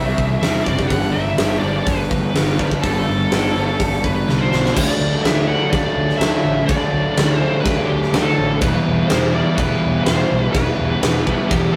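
A straight, steady 4/4 pulse carries this short cut from a longer rock piece in the shoegaze and dream pop vein, its mood blissful and dreamy. A huge arena drum kit sits up front, with a punchy kick, fat snare, bright cymbals on crash and hi-hat, and a natural hall tone. A drum fill at 4.3 seconds leads into a new passage at 4.8 seconds. A crunchy, double-tracked overdriven guitar plays a picked riff up front, while a smooth, bright overdriven lead guitar carries the melody in a higher register. Underneath, a vintage foam-muted electric bass adds a dark, round, amped low end. The harmony moves from Cadd9 and Gadd9 to D and then Em, and the whole take has the rough feel of a rehearsal room, bathed in wet studio reverb.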